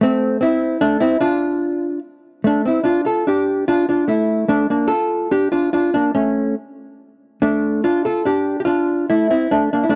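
A dry, close recording with a 1970s studio character and light reverb frames this short cut from a longer musette in D minor, a bittersweet, nostalgic piece in 3/4 at 146 BPM, played with a rubato feel and tuned slightly below standard pitch. A lone hollow-body jazz guitar, electric, clean and fingered, sits up front with a dark, compressed tone, staying between A3 and A4. Its harmony moves from an F6 opening to D minor at 2.4 seconds, breaks off into a chordless passage at 6.2 seconds, and settles back on D minor at 7.4 seconds.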